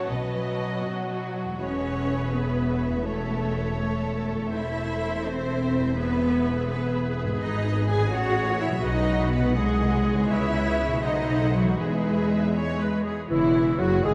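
Classical orchestral music in 6/8 at 82 BPM, this short excerpt from a longer piece sits in E major and carries a dramatic, urgent mood. Two violin sections share the upper lines, one warm and distant in the background carrying the melody, the other clear and intense playing a second line, while a focused viola section fills the accompaniment and a ringing, thumb-plucked concert harp spreads arpeggios across a broad range. A rich, smooth cello section sits up front with a clear double bass section beneath it, both holding the bass from 0.1 seconds. The harmony moves through colorful turns such as G#7/B#, C#m7 and B7b9 before settling on E, and at 13.3 seconds a brief wind entry arrives: a hollow silver flute, a punchy oboe, a barely audible dark clarinet, a mellow bassoon and a tight French horn section holding sustained chords. Everything is bathed in a huge, wet reverb that places the orchestra in a vast, echoing space with a softened, rounded top end.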